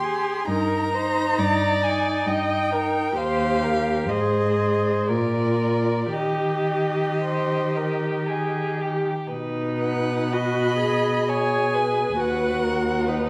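A string quartet begins together in a tender, lyrical slow romantic movement in 3/4, moving at 55-68 BPM with a rubato feel in Eb major. A close first violin sings the expressive melody and a more distant second violin carries a supporting line, both shaped with vibrato and portamento, while the viola gives smooth, even accompaniment and a rich, up-front cello anchors the bass, the quartet set in a reverberant recital hall. At 9.3 s the harmony turns to B major for a new section before this fragment of a longer piece breaks off at 13.3 s.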